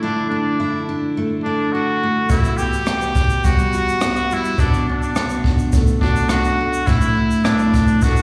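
A straight 4/4 pulse at 105 BPM drives this sunny, carefree acoustic pop fragment in D major, cut from a longer piece, with a picked, full-bodied steel-string dreadnought guitar and a bright solo trumpet carrying the melody from the start, both treated with slapback echo. At 2.3 seconds a brushed drum kit joins with a boomy kick, rim click and shaker as the chords move through Dsus2, Emadd9, Bm7 and Asus4. All three parts sit up front in a sound that feels like a live gig heard through a venue's PA, lightly touched by recital-hall and small-room reverb.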